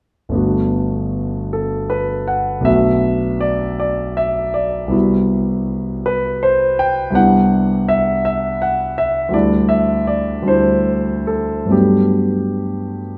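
Bathed in a wet recital-hall reverb with a 1.7-second decay, this luminous, hazy fragment of impressionist classical solo piano in G major drifts in a rubato 6/8 at roughly 45-57 BPM, the clear, polished grand sitting up front from 0.3 to 13.2 seconds across a range of G1 to G5 as it moves through Gmaj9, Bm7, Cmaj7#11, Em9/C and D9sus4 before returning to Gmaj9 at 11.7 seconds.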